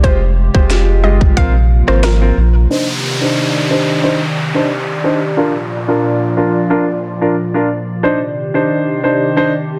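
This tough, bouncy dancehall excerpt at 90 BPM opens with a tight, overdriven island pop drum kit with gritty sampler texture, a round, deep sub bass, a hollow, detuned square pluck melody with chorus and delay, a clear concert grand piano, and an airy, flute-like pad, the piano and pad both pumping under a low-pass filter, before the drums, pluck and bass fall away by 2.7 s. An electronic downlifter then accompanies the piano and pad until 8.0 s, while a filter sweep carries on through to the finish.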